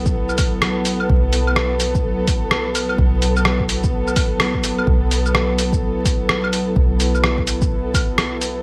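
A swung 4/4 future garage groove of deep electronic kick and an up-front, muffled, tape-warm sampler kit of claves, hi-hat, rim click and shaker, treated with gated reverb, carries a melancholic, wistful excerpt in which a dark, woody string section holds sidechain-pumped chords over a soft, round 808-style bass, all wrapped in plate reverb, vinyl crackle and bright 1980s-style digital sheen, with a band accent at 4.4 seconds.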